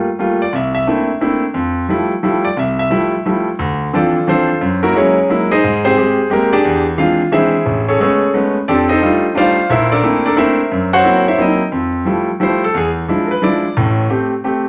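A lilting 3/4 swing at 177 BPM drives this short jazz waltz in F major, its eighth notes leaning into a gentle shuffle. A solo concert grand piano carries the whole piece, sounding clear and up front, with a deep bass and a smooth, vintage character as it ranges from A1 up to Gb5. The harmony is rich and restless, opening on Gm9 and C13 before settling on Fmaj9, then wandering through colourful chords such as Gb9, E7alt and Bbmaj9#11 in the middle stretch from 3.6 seconds. A return to Fmaj9 at 11.7 seconds brings back the opening idea before the passage closes on Am7. A lush studio reverb and a layer of vinyl crackle give the warm, playful mood an aged, nostalgic glow in this fragment of a longer piece.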